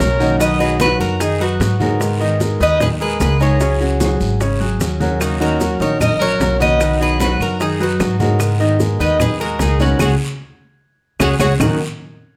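Warm and nostalgic, this brief 150 BPM Cuban son and guajira passage in Eb minor sets a bright, metallic, double-strung tres melody over a punchy trumpet second line with vibrato, dark picked steel-string guitar, natural grand piano arpeggios and a thumpy, gut-strung pizzicato upright bass up front, while distant congas, soft-handed bongos, raspy guiro and grainy maracas keep the groove, woody claves join at 5.2 seconds, and a band accent from 10.0 seconds leads into a drum fill at 11.4 seconds in a moderate studio reverb.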